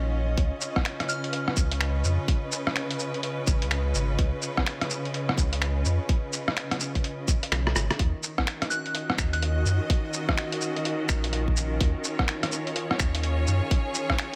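A round, deep sub bass with tube saturation and sidechain pumping anchors this wistful, ghostly future garage excerpt at 126 BPM in Eb minor; swung 16ths ride on a tight, up-front electronic kick and a muffled, pitched-down sampler-style kit of cabasa, finger snaps, hi-hat and rim click, while a distant, lush bowed string section pumps through sustained chords moving from Db9 to Ebm7 after a drum fill at 7.5 seconds, and a soft, warbling FM synth bell with chorus and digital delay glints in the background at 1.1 and 8.7 seconds, all under light reverb and digital ambience.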